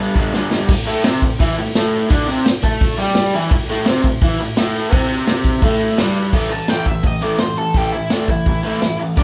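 A crunchy overdriven electric guitar opens this gritty, swaggering garage rock excerpt, its picked, double-tracked riff sitting up front in a straight 4/4. A vintage acoustic drum kit joins at 0.2 seconds with a quick fill, bringing a punchy kick, a medium-tuned snare, hi-hat and crash with dark cymbals and a rolled-off top that suggests a small room. Guitar and drums drive a brisk, swaggering section over an A minor chord before the music shifts at 6.3 seconds. Shortly after, at 6.5 seconds, an octave-fuzz lead guitar enters for a solo, its dark, distorted tone cutting in alongside the riff. Light reverb gives the whole the feel of a band playing live together in one room, and the clip ends abruptly at 9.2 seconds, cut from a longer piece.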